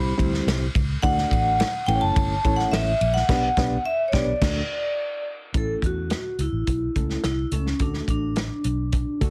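Ringing vibraphone melody with slow motor vibrato, reedy electric piano accompaniment in fast tremolo and a round, foam-muted electric bass open this danceable, uptempo 1960s-style soul excerpt, with a tight, distant soul drum kit joining at 0.2 s, the band accenting together from 3.3 to 5.5 s before a new section at 5.5 s, all under light reverb and a heavily compressed radio sound.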